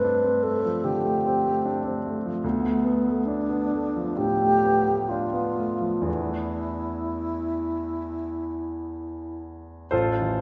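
Alto flute and concert grand piano begin together at 0.0 seconds in this brief, hazy impressionist duo, cut from a longer classical piece. The wooden-headed alto flute carries the melody in a pure, straight tone with tongued notes, its mellow sound placed up front. Beneath it, the piano accompanies with an intimate, smooth, vintage character, with a deep bass and the faint noise of its action audible. The harmony moves from G9sus4 through Dm6 to E7sus4 in a flexible, rubato 4/4, giving the passage a wistful air. A wet recital hall reverb surrounds the pair, and the flute stops at 9.4 seconds while the piano continues until 10.4 seconds.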